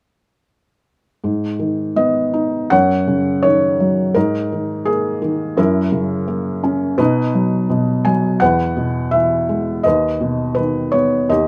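A felt-muted upright piano enters at 1.2 s and carries this brief classical piece alone until 11.5 s, a clip cut from a longer work. Its tone is soft and mellow, placed up front with an intimate closeness, and a light reverb gives the room a faint halo. The playing is lyrical and rubato within a 4/4 metre, and it spans from D#2 up to G#5. The harmony moves from G#m through D#m7/F#, G#sus2 and F#7 before opening onto B and E, then settling on Badd9/D#. The mood is cool and bittersweet, the brighter major chords tempering the minor opening.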